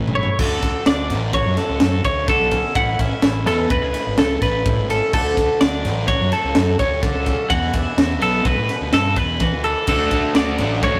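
A bright, compressed twelve-string electric guitar sits up front playing arpeggios high in its range, its clean, picked tone ringing through a spring reverb. This short excerpt of math rock and midwest emo moves at 126 BPM in 5/4 with a straight, bright and playful feel. Beneath it, a second clean, twangy electric guitar with a scooped tone and its own spring reverb plays accompaniment, while a fuzz-laden fingered bass, overdriven and heard both direct and amped, anchors the low end. A crisp fusion drum kit, high-tuned snare and punchy kick up front in a pumping small room, opens with a brief fill before the harmony cycles through Dmaj7, Amaj7, Dmaj7 and E7sus2. At 9.9 s, as the chords return to Dmaj7, a crunchy, double-tracked overdriven guitar enters up front with a riff. The whole thing has the rough character of a rehearsal-room recording, with light reverb and tube saturation.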